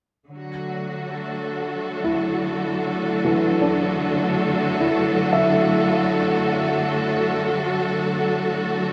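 Serene ambient music in D major at 76 BPM in 3/4, cut from a longer piece, where a lush, clear symphonic string section holds bowed, vibrato-rich sustained chords from 0.3 seconds, joined at 2.0 seconds by soft, intimate felt-muted upright piano arpeggios trailed by a diffuse ambient delay, all set in a huge, wet reverb that lingers for 7.5 seconds.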